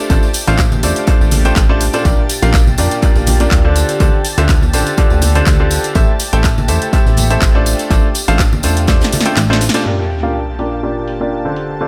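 A brilliant, up-front grand piano riff with dub echo and a closing filter sweep leads this bittersweet, soulful piano house piece at 123 BPM. It rides over a silky, detuned analog string pad, a funky plucky analog bass, a punchy electronic kick, a tape-warm house kit of handclaps, hi-hat and snare, a very quiet airy studio kit, and ringing tambourine and congas, all in an echo-heavy small room, before a drum fill at 8.9 seconds and a sub drop impact at 9.9 seconds.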